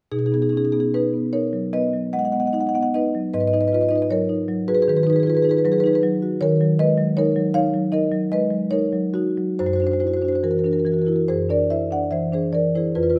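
Rubato phrasing in 4/4 drifts between 66 and 79 BPM, giving this short stretch of a contemporary classical piece for solo marimba an unhurried, breathing pulse. The marimba, played with medium mallets on rosewood bars, carries the whole passage from 0.1 to 13.2 seconds, ranging from F2 up to F#5 with a woody, up-front tone. The mood is warm and playful. Its harmony moves through B6, G#m7 and D#m7 before landing on F#aug7 at 9.6 seconds, lending the close an unresolved, questioning colour. A wet recital hall reverb with a 1.4-second decay surrounds the instrument, so each struck note blooms into the room.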